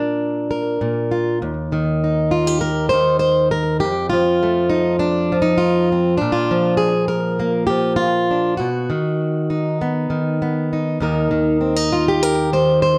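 Hopeful and warm, this short folk excerpt cut from a longer piece features a solo fingerpicked, plugged-in steel-string acoustic guitar, up front with a slapback echo, moving at a rubato 100 BPM in 4/4 through Bb, a chordless stretch at 1.4 seconds, then F, Bb, B and Eb within a dry, close 1970s-style studio sound touched by studio reverb.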